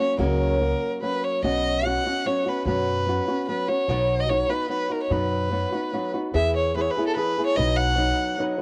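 A clear, bowed violin with vibrato sings the melody up front through cassette-tape coloring and analog delay, over a thumb-plucked flamenco guitar with audible finger squeak and a woody, pizzicato gut-string upright bass that enters at 0.2 s, in this festive, proud mariachi fragment at 147 BPM in 3/4 and B major, captured dry as a home cassette recording.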